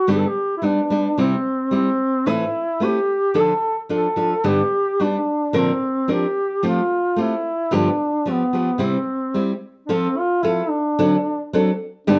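A dark, vibrato-laden duduk opens this short excerpt of Mexican folk in mariachi style, carrying the melody up front with a distant, roomy tone, joined almost at once by a bright, fingerpicked nylon-string guitar playing accompaniment. Moving at 110 BPM in a straight 2/4 in C major, the festive yet romantic piece travels through chords such as Amadd9, Bbadd9 and G7 before closing on D7 near 11.0 seconds. Moderate studio reverb and a dark, warm production surround the pair.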